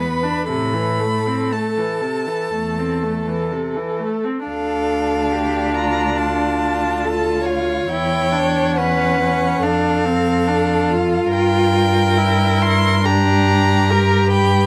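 Yearning and elegiac, this slow romantic movement for string quartet unfolds at a rubato pace of roughly 58-72 BPM in 4/4, beginning in A minor before turning toward D minor at 4.5 s. A single bowed violin carries the melody high in its range, its rich, focused tone shaded with vibrato, while a second violin sits further back with a supporting line. A clear, focused viola fills in the accompaniment from a slightly distant position. The cello anchors the bass up front, its soft attack, expressive portamento and vibrato giving the low line a singing quality. The harmony moves from A minor through D minor and a diminished chord to a closing G minor seventh, captured with close, detailed microphones and light reverb in a passage cut from a longer piece.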